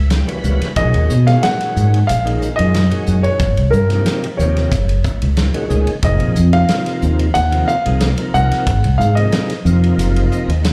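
Heard as a live club gig through the venue's PA with light reverb, this funky, driving electric jazz fusion excerpt pairs a thick, gritty tonewheel organ (overdriven, with slow rotary speaker, chorus vibrato and slapback echo) with an up-front, bright fretless electric bass under ensemble chorus and a distant, roomy acoustic drum kit with punchy kick and medium-tuned snare, while a warm grand piano with slapback echo carries the melody from 0.8 s over chords such as Gb7b9, Bmaj9 and Fm7, and the organ adds fills at the opening and again from 10.0 s.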